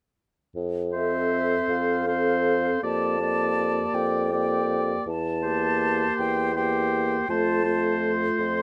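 A mellow bassoon opens this serene, lyrical excerpt from a slow romantic movement for wind quintet, sounding its low bass line with vibrato at 0.6 seconds before the rest of the ensemble joins at 0.9 seconds. In F major and 6/8 at 54 beats per minute, the music moves with a free, rubato feel over a chord progression of F, Gm7/F, C7/E and back to F. The silver concert flute carries the melody with an airy, metallic tone, a soft attack and expressive vibrato. Just beneath it, a clear oboe sits up front with a second line, its light vibrato and smooth top giving it a distinct presence. A dark French horn and a clarinet, the latter tucked into the background, fill out the accompaniment in a poised classical style. Light reverb lends the quintet a gentle sense of space through to the close at 8.6 seconds.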